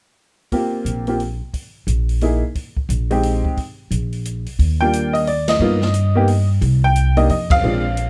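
This jazz piano trio swings playfully at 177 BPM in 3/4 time, set in E-flat major with a light swing on the eighth notes. A clear, slightly detuned upright piano carries the melody from 0.5 seconds, sitting up front with a natural, woody presence. The pizzicato upright bass has a woody, steel-strung tone and joins at 0.8 seconds, also placed close to the listener. An acoustic drum kit with dark cymbals, a medium-tuned snare and a boomy kick plays hi-hat, ride, snare and kick in a small, natural-sounding room, a little quieter than the piano and bass. The harmony moves from a suspended chord over B-flat to a brief chordless passage, then a second section opens at 4.6 seconds on an E-flat major ninth chord and passes through an augmented chord to C minor, with two band accents along the way. The close, detailed recording carries little reverb, and the piece is cut from a longer performance.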